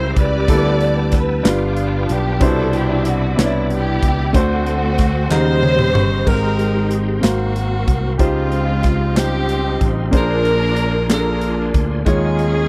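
Slow, reverent gospel in 6/8 at 62 BPM, moving from G major to Ab major at 6.3 s. From the start, a smooth bowed string section carries the melody over natural baby grand piano, growly picked electric bass, a punchy modern drum kit, hollow background handclaps and a reedy tonewheel organ with slow rotary speaker and key click. An edgy, scooped alto saxophone joins the melody at 5.3 s over hopeful, rich chords, all in a dry, close 1970s-style studio sound.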